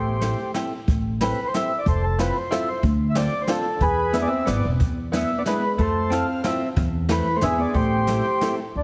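A whirling 3/4 musette waltz in a nostalgic mood, this short excerpt is led by a reedy, full accordion carrying the melody up front, over pizzicato upright bass with a woody tone and brushed drums with a punchy kick and medium-tuned snare. A fingerpicked open-back banjo adds twangy, plunky accompaniment, while a dark, clean hollow-body electric guitar plays a second line that sounds briefly at the start and returns at 4.1 seconds. The chords move from Am7 through Fmaj7, Dm7 and E7 before settling back on Am7, all set in a moderate scoring-stage reverb with a heavily compressed, radio-like sound.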